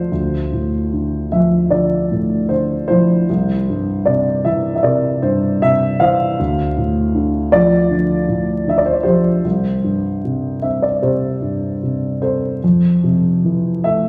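A vinyl crackle sits beneath a solo concert grand heard up front in a wet recital hall, its reverb lingering about 1.6 seconds. This is a short excerpt of lyrical classical piano in D minor, wistful and melancholic, moving at around 77 BPM in 4/4 with uneven, rubato beats. The piano is dark and mellow with a deep bass and a boxy body, spanning C2 to F5 as it plays alone from 0.0 to 14.1 seconds. The harmony drifts from Dm7 to C7, returns to Dm7, then passes through Am7/C before settling on Fmaj7 at 12.6 seconds. Tuned to A4 = 441 Hz, the fragment feels like a passage lifted from a longer piece.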